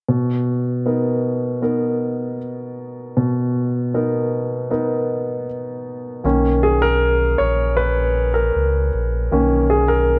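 A clear, polished baby grand piano opens this tender, heartfelt pop fragment on a Bmaj7 chord and steps into a solo from 6.2 s, when a deep, full sub bass with an added octave enters up front beneath it, all bathed in a moderate plate reverb and the worn, warbly pitch drift of old cassette tape with a dulled top end.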